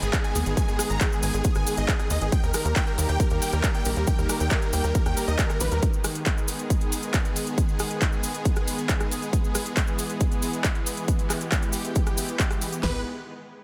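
A punchy, overdriven big-room dance kit anchors this euphoric, soaring uplifting trance excerpt, its huge snare, crash and toms up front beside metallic hats, handclaps and rim clicks, while a tight sawtooth sequencer bass with a filter pluck drives underneath with sidechain pumping until 5.8 seconds and returns at 12.8. Huge, airy supersaw chords carry the melody with dub echo over a lush, detuned supersaw pad that sustains throughout with a slow attack. A grainy, close cabasa sits in the background, and a very quiet downlifter sweeps through the opening seconds under light digital reverb.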